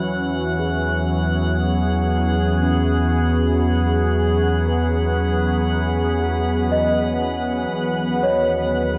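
A dreamy mix soaked in a lush hall reverb opens this nine-second fragment of a longer ambient piece, reflective and melancholic in mood, moving at a slow 59 BPM in a straight 4/4 and tuned to A4 = 438 Hz. Up front, an evolving wavetable pad holds sustained chords with a detuned, morphing triangle tone, slow attack and long release, thickened by chorus and its own reverb. In the background, a worn celesta plays delicate, bell-like arpeggios with soft felt hammers, its close-miked sound sweet and slightly out of tune, trailed by tape echo. Beneath it, a deep, round sine sub bass sits between D#2 and E2, while an analog drone on F#3 blends sawtooth and pulse waves with pulse-width modulation, chorus and phaser. Above everything, a calm, glassy texture of drifting overtones floats between F#5 and F#6, and the harmony rests on E6 before shifting to B7/D# at 7.7 seconds.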